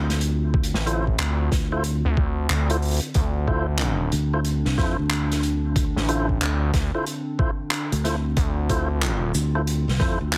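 Funky and swaggering, this glitch hop excerpt rides a swung sixteenth-note feel in 4/4 over a Dm7 chord. A barely audible electronic impact opens it, and a loose indie drum kit with handclaps, hi-hat, shaker and a fat snare enters at 0.1 seconds, its acoustic room sound pumping. A pitched-down, thumpy, sampler-style kick joins at 0.5 seconds. Two basses share the low end: a direct, up-front fingered electric bass, and from 0.7 seconds a gritty sawtooth synth bass with oscillator sync, filter sweeps and tube saturation that gives it an aggressive, evolving edge. Above them, a warm, lightly overdriven tonewheel organ plays stabs through a fast rotary speaker with key click, delay and sidechain pumping, while a dark, warbling tape-like pad sustains chords in the background with chorus, reverb and a nostalgic lo-fi haze. The mix carries a heavily compressed, radio-like sound with light reverb.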